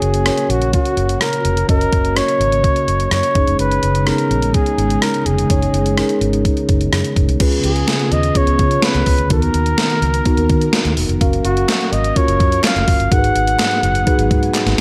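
Set in light digital ambience, this uplifting, nostalgic slice of 1980s-style pop moves at 126 BPM in F# major, with an up-front gated digital drum machine driving a thumpy kick and a gated-reverb snare, over a dark, round, foam-muted fingered electric bass. A smooth, warm flugelhorn with vibrato carries the solo melody through a touch of delay, while a mellow tine electric piano plays clean accompaniment and sawtooth string-machine cellos hold full-bodied, chorused chords in the background. Distant, crisp group handclaps join quietly at 11.7 s, after the chords have moved through C#7, Bmaj7 and F#maj7, and a drum fill lands at 14.5 s.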